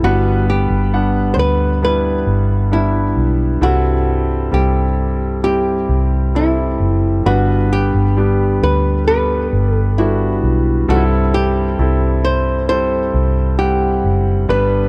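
A heartfelt, tender pop excerpt at 66 BPM in a straight 4/4, in which a small, woody, fingerpicked nylon-string guitar on old strings carries the melody over a smooth, long-sustaining vintage grand piano and a round, foam-muted, amped fingered electric bass up front, all moving between G and C6 under light reverb in a dark, warm production.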